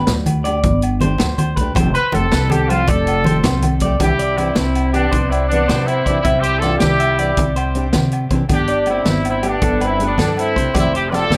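A tight, up-front horn section carries the melody from 1.9 s, playing vintage, jazz-style lines with light vibrato and a touch of tape echo. This warm, danceable highlife guitar band groove, cut from a longer piece, moves at 107 BPM in a straight 12/8 in C major. An electric guitar through a small old amp plays slightly broken-up, lo-fi arpeggios with its own tape echo, while a fingerpicked nylon-string guitar with fresh strings adds full-bodied accompaniment. A woody, growly pizzicato upright bass and a vintage drum kit with a punchy kick and rolled-off top anchor the rhythm. Low-tuned congas and agogo bells ring in the background. Light reverb surrounds the mix as the harmony moves through Gsus2, Fadd9 and Cadd9.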